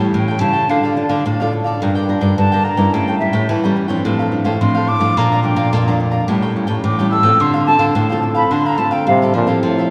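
Samba in D minor at 107 BPM, lively and yearning, this short passage is cut from a longer piece and bathed in the long, wet reverb of a church or concert hall. Two fingerpicked nylon-string guitars carry the harmony: one picks out accompaniment up front, while the other holds the bass line with an occasional finger squeak, and a bright, crisp cavaquinho sits softly above them. An airy concert flute with expressive vibrato plays a distant second line from 0.1 seconds, taking a solo through most of the passage as the chords move from A7 and Dm through Gm7 and Bbmaj7 back to Dm7. Near the end, at 9.1 seconds, a dark, breathy trombone enters with the melody, its whispered, intimate jazz tone marked by soft attacks, scooped notes and vibrato close to the listener. The classical guitar work and the flute's tongued phrasing give the dance rhythm a yearning edge within the cavernous space.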